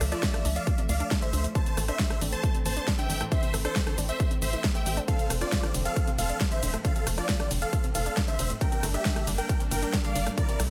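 A detuned, euphoric supersaw lead carries the melody through phaser and dub echo, its sawtooth unison sound huge and bright over light reverb and digital ambience in this excerpt of bittersweet, soaring uplifting trance. A punchy, layered electronic kick sits up front from 0.2 s, while a big-room kit adds a huge snare, metallic hi-hats, ride cymbal, rim click and shaker. A tight, driving sequencer bass with a dark filter pluck pumps against the kick, as do the other parts, and a nasal, wave-folded analog pluck spins arpeggios through chorus and dub echo in the background. Behind these, a catchy, detuned plucky unison lead traces a second line with its own echo, and a lush symphonic string section holds smooth, bowed chords with gentle vibrato. The harmony moves from Dm to Am, then F and Gm, giving the euphoric lift a wistful edge.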